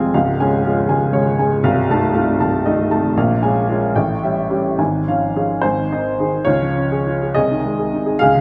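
Lyrical and warm, this brief fragment from a longer romantic character piece for solo piano unfolds in 6/8 at roughly 68-81 BPM, counted in dotted quarters, with a freely breathing rubato. The upright piano plays alone from 0.0 to 8.4 s, its tone clear and woody, slightly detuned, with a long sustain that sits up front and present, spanning from C1 to A5. The harmony stays in Db major, moving through F7/C, Bbm7 and a colourful A7 before settling on Db/Ab and Ab. A second section arrives at 6.5 s, returning to Db and closing on Ab/C. A wet concert hall reverb surrounds the instrument, lending the playing a spacious, glowing halo.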